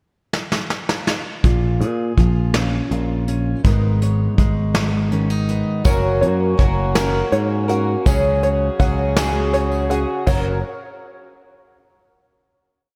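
A soft brush drum kit opens with a fill over the pickup bar, setting a slow 6/8 pulse at 54 BPM in F# major for this warm, hopeful indie folk piece. From 1.4 seconds a round, dark picked electric bass and a full-bodied fingerpicked steel-string acoustic guitar carry the pre-chorus through A#m and G#madd9. At 5.8 seconds the arrangement builds as the guitar gives way to a woody, shimmering twelve-string with slapback echo, a reedy, nasal harmonium pad, a plunky open-back banjo arpeggiating in threes with slapback echo, and a jingly tambourine in the background, all settling onto a final F# chord in light reverb.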